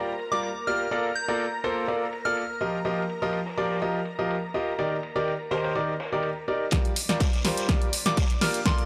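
Piano house at 124 BPM in G minor with a soulful, energetic feel, this excerpt is led by a clear, up-front grand piano riff with sidechain pumping, tape echo and a low-pass filter, over a silky, detuned analog string pad holding sustained chords in the background while a soft, pure FM bell melody with chorus and phaser sounds from 0.3 to 2.6 s and returns at 8.1 s. A very quiet street-band drum kit with dark cymbals and a rolled-off top plays hi-hat, ride and snare from 0.2 s onward, and the chords move from Gm7 through Bbmaj7, F9sus4 and Ebmaj7. At 6.7 s a build-up arrives as an overdriven, punchy electronic kick and a dry analog drum machine enter with a drum fill while the piano's filter sweeps, all within a dry, gritty hardware sound with transformer saturation and light reverb.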